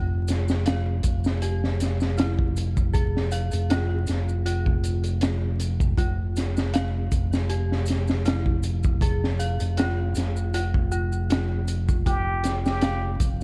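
This brooding, dark trip hop excerpt moves at 79 BPM in 4/4, with a light 16th-note swing, and sits on a single Fmadd9 chord. A dark, detuned synth bell plays eerie, inharmonic FM arpeggios between E4 and F5 from the opening, its fast attack and long release colored by chorus, tremolo and tape echo. Beneath it, an overdriven fingered electric bass sits on a round, amped F1 up front. From 0.3 s, a crunchy breakbeat kit of hi-hat, punchy kick and high-tuned snare adds gritty, saturated weight with a rolled-off top, while compressed maracas sit in the background. At 12.1 s, a plunger-muted trumpet steps forward with a brief, vintage jazz-style G4, scooped and wah-wah inflected. The production is dry and dark, with vinyl crackle lending a warm patina.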